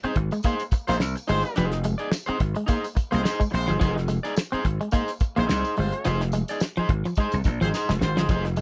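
A punchy, up-front slap bass anchors this hypnotic, driving funk excerpt in F minor at 107 BPM, with a 16th-note swing over a single Fm7 chord, alongside a cloth-damped, thuddy drum kit with a fat snare and tight kick that plays a fill at 7.7 seconds. A twangy, slightly broken-up electric guitar accompanies a compressed clean guitar riff with spring reverb, while a jingly tambourine enters at 0.3 seconds and a mellow, distant horn section with vibrato and octave doubling carries a second line from 0.9 seconds. The sound is dry and close, in a 1970s studio style.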